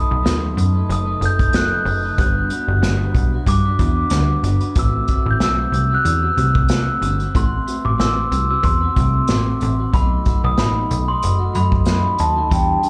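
Indie bedroom pop with a mellow, wistful mood at 93 BPM in a lightly swung 4/4, this short clip from a longer piece moves through B7, Gmaj7 and Am69. A soft, bell-like glockenspiel played with rubber mallets carries the melody up front through lush chorus, slapback and tape echo, while a slightly broken-up, compressed electric guitar through a small old amp accompanies with chorus, warbly pitch drift and slapback echo. A punchy, funky analog bass with a plucky sawtooth-and-square filter sound sits up front from 0.1 seconds, and a distant, roomy unplugged drum kit played with bundle sticks enters at 0.3 seconds with a punchy kick, medium-tuned snare and hi-hat, all heard as a live gig through the venue's PA with club reverb.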